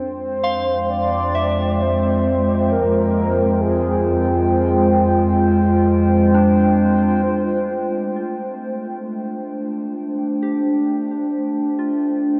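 Ambient, serene and weightless, this short excerpt is steeped in a huge, wet reverb and the warbling pitch drift of worn cassette tape. A velvety, dark synth lead carries the melody only until 4.5 seconds, while a nostalgic, detuned lo-fi pad sustains chords from Fmadd9 to Dm7 under a filter sweep, and a bowed double bass section holds a smooth F2 with vibrato until 7.2 seconds. A soft, pure FM bell enters at 0.4 seconds with gentle arpeggios through chorus, phaser and tape echo, sitting quietest in the mix.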